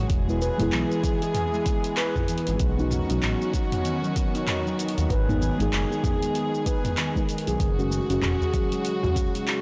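Meditative and warm, this excerpt of organic downtempo has a swung 16th-note feel, with ringing stainless-steel handpan arpeggios carrying tape echo over muted, felt-like synth keys with chorus and sidechain pumping, dark sul tasto chamber strings holding sustained chords, and a smooth gliding sawtooth bass with tube saturation and portamento sitting up front beside a deep electronic kick, all moving through E, Badd9, G#m and F#madd9. A layered deep house kit of cabasa, handclaps, hi-hat and toms fills out the rhythm, a background udu enters at 8.4 s, and the whole recording sounds blown-out and overdriven under light reverb.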